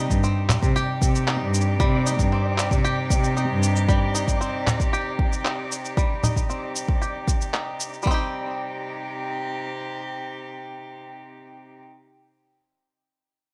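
Light reverb and small-room ambience frame this wistful, intimate folktronica excerpt, where a distant, reedy string quartet holds sustained chords through vintage sampler grit beneath a bright, twangy banjo played with fingerpicks, its arpeggios run through a filter sweep and tape echo, while a close, sul tasto cello carries the bass until 3.8 s, a grainy, flickering texture lingers in the background, and muffled, pitched-down electronic cabasa, handclaps and congas join an overdriven, deep electronic kick up front until the drums stop at 8.2 s.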